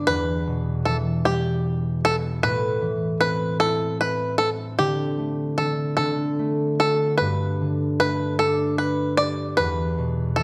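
In a rubato 6/8 at 51 BPM counted in dotted quarters, this sleepy, tender children's lullaby in G major drifts through Em, Am, Dsus4 and D before settling on Gsus2 and closing on E5. A ringing, fingerpicked concert harp carries the accompaniment from its low register, while a twangy, percussive bluegrass banjo played with fingerpicks enters at 0.1 seconds to sing the melody higher up. Both acoustic instruments sit up front in a moderate recital hall reverb, in this short passage cut from a longer piece.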